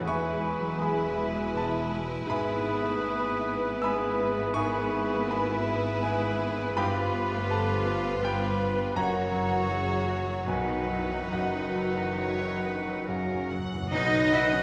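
A clear, up-front grand piano carries the melody from the start of this passionate, lush romantic movement for piano and orchestra in a rubato 3/4 at 67-84 BPM, moving from E major to B major at 4.6 s, with a distant violin section also carrying the melody while a second, close violin section, a pure silver flute, a warm clarinet and a roomy oboe weave supporting lines over a mellow bassoon, a very quiet viola section, dark French horn chords, a smooth cello section and a background double bass section; round, soft-mallet timpani join at 9.0 s, and clear trumpet stabs arrive with barely audible trombones at 13.9 s, all bathed in a wet concert-hall reverb in this excerpt cut from a longer piece.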